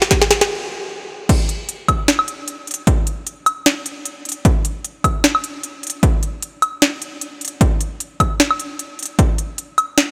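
Playful and bright, this future bass excerpt at 152 BPM in a swung, half-time 4/4 opens with a brief build-up, a trap drum kit fill of crash, crisp hi-hat, sharp snare and woodblock that breaks into a stop at 0.5 seconds, before the drop lands at 1.3 seconds, with a punchy, layered, overdriven electronic kick, present from 0.1 seconds, sitting up front alongside the kit in a light, roomy reverb.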